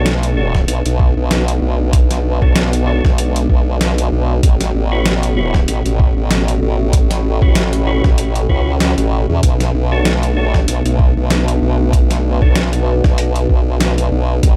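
A formant-sweep wobble bass sits up front in this playful, swaggering glitch hop cut, its pulse-and-sine tone wobbling through a formant filter with chorus and tube saturation, low in the register. A gritty, compressed electronic kick drum thumps up front from 0.5 s, with a sampler-style boom bap kit adding hi-hat and a medium-tuned snare, both re-recorded in a large room. The groove runs at 96 BPM in 4/4 with a 56% swing on the sixteenths, moving through Bm9, A69 and back to Bm9 in B dorian. Stabs from a mellow, round percussive tonewheel organ carry third-harmonic percussion, chorus vibrato, a fast rotary speaker and tape echo, with sidechain pumping until 12.6 s. Behind them a warbly, nostalgic lo-fi pad holds sustained chords, joined at 0.8 s by a deep, full-bodied ambient pad of detuned unison saws with a sub octave, both washed in their own reverb and sidechain pumping. The overall mix is dry in room sound but heavy on echo, giving this short excerpt from a longer piece a punchy, characterful feel.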